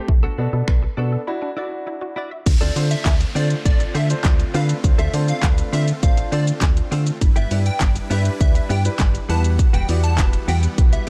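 A straight 4/4 pulse at 101 BPM drives this carefree, upbeat dance-pop clip, cut from a longer piece. A punchy, up-front pop drum kit with a fat snare, crash, hi-hat, shaker, finger snaps and handclaps sits over a round, dark FM bass with a fast attack, and both the bass and a deep concert grand piano pump against the sidechain. A clean, scooped electric guitar, recorded direct and thickened by analog chorus, plays a picked riff throughout. A lush, detuned unison pluck spins delayed arpeggios through the opening and a short break, and then the drop lands at 2.5 seconds: huge, bright supersaw chords sustain in the background as a downlifter sweeps down behind them. A catchy, square-wave plucky lead carries the melody high up through digital delay, joined at 3.1 seconds by a very quiet, crisp group handclap. The chords move from Bm7 and Dadd9 into Dm7, G6 and Emadd9 in a dark, warm mix with little reverb.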